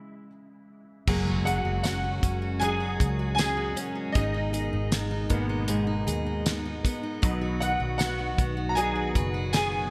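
A clear, up-front grand piano with ensemble chorus opens this tender, emotional pop ballad alone on C#m at 78 BPM, and at 1.1 seconds the full band enters: a lush, warbling detuned pad with chorus in the background, a bright fingerpicked steel-string acoustic guitar with audible finger squeak, a round, foam-muted vintage electric bass, and a dry, damped 70s drum kit with a fat snare, tight kick and gated reverb. A very quiet electronic impact follows at 1.2 seconds and a faint, jingly tambourine at 1.8 seconds, all within a bright 1980s-style digital production with light small-room ambience.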